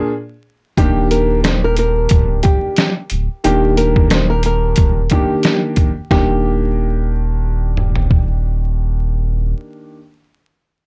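A dark, dry production with vinyl crackle frames this confident, soulful boom-bap hip-hop cut in Eb major, moving at 90 BPM with a light swing. A smooth, vintage grand piano opens alone on a Bb7 before settling onto Ebmaj7 at 0.8 seconds, when a deep, full sub bass and a compressed, pitched-down, muffled sampler-style drum kit arrive up front with a thumpy kick, a medium-tuned snare, hi-hat and toms. A small, fingerpicked nylon-string guitar carries the melody through a touch of digital delay, and the piano plays on to the end at 10.0 seconds.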